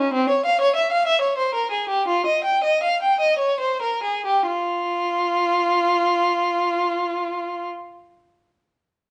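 A single bowed violin carries this grave, flowing classical piece, written in the manner of a baroque suite movement for unaccompanied violin. The tone is warm and focused, with vibrato and a smooth upper register, and it moves between C4 and G5. In F minor and 6/8, the pulse sits between 45 and 66 BPM in dotted quarters, and the playing leans into rubato. The opening passage slows down over its first 4.5 seconds before a new section begins, and the violin's line ends at 7.7 seconds, with the excerpt closing at 9.1 seconds, all set in a moderate stone-room reverb. The violin sits up front, while the room itself is heard from further back with a gently muted upper range, giving this short fragment of a longer work a solemn, resonant air.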